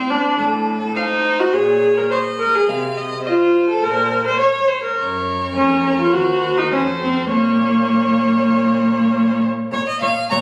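Cheerful and graceful, this brief cut from a quick classical-period string quartet movement moves at 104 BPM in 4/4 with a straight feel, in Bb minor with the tuning set to A4 = 435 Hz. A clear, smooth first violin carries the melody with vibrato over an up-front, rich viola accompaniment that stops at 9.4 s, while a focused cello holds the bass and a second violin joins at 1.0 s with its own line. Harmonies move through chords such as Bbm, Cmadd11, Gb and F, and the whole sits in a wet concert-hall reverb, captured on a phone in the room with club ambience and compression.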